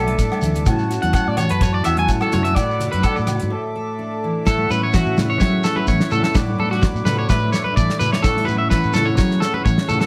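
Highlife guitar band at 127 BPM in A major with a sunny mood, led by a twangy, slightly broken-up electric guitar playing arpeggios through tape echo in a clean solo up to 4.5 seconds, over picked dreadnought acoustic guitar, a reedy accordion holding sweet sustained chords, a round fingered bass, a dry, tight 70s drum kit, distant soft-handed congas, a grainy shekere and ringing agogo bells that drop out at 3.4 seconds, with a break from 3.5 seconds before the chords cycle through A6, Bm and E7sus4 in moderate studio reverb.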